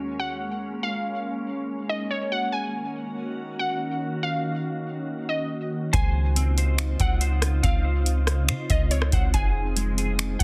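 A dry, dense and heavily limited modern master frames this spacious, ethereal slice of atmospheric cloud-rap, cut from a longer piece in Bb minor at 141 BPM with a half-time feel in 4/4. From the opening, a crystalline, detuned wavetable pluck with a sub octave carries the melody between Db5 and Ab5, its bright digital tone softened by chorus, a low-pass filter and tape echo, while a glassy FM pad holds slow-blooming chords beneath it, thickened by ensemble chorus and its own reverb and pumping against a sidechain. The harmony moves from Bbm7 to Ebm7, then Dbmaj9 at 5.9 seconds and Fm7 at 9.3 seconds. At 5.9 seconds the low end arrives: a soft, round 808-style bass with a sine-like, dark body sits up front, and a booming analog drum machine adds a deep kick, metallic hi-hats, finger snaps and rim clicks. A clean, fingered electric guitar enters at the same moment with compressed, shadowy arpeggios, veiled by ensemble chorus, a low-pass filter and tape echo.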